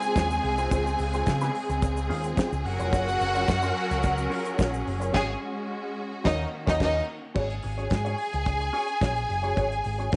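Disco with a glamorous, sultry mood, cut from a longer piece, where a lush, up-front string section carries a second line over a more distant, focused string section holding sustained chords until 7.3 seconds, while a mellow, clean electric guitar with wah comps underneath. A damped 70s drum kit with a fat snare, tight kick and dark cymbals drives the groove, joined from 0.2 seconds by a round, punchy picked bass through an envelope filter, and a grainy egg shaker sits in the background until 5.1 seconds. The band hits an accent from 5.1 to 7.4 seconds as the chords move from Dbmaj7 and Gbmaj7 toward Ab7sus4, all set in a moderate echo chamber reverb with a small-room feel and a rolled-off top.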